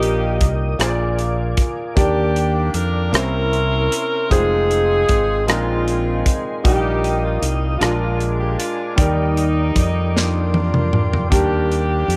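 Slow, soulful gospel in 6/8 at 51 BPM in Eb major, with a hopeful air as a tight, smooth-topped saxophone section carries the melody up front over a brilliant grand piano, a punchy fingered electric bass and a polished studio drum kit of kick, snare, rim click, hi-hat and toms. A mellow, flute-like tonewheel organ sits in the background with key click, chorus vibrato and a slow rotary speaker, holding chords through a progression from Eb/Bb and Bb7 to Ebmaj7, C7b9, Fm7 and Bb9sus4. Light small-room reverb frames this excerpt from a longer piece, and a drum fill runs from 10.2 to 11.3 seconds.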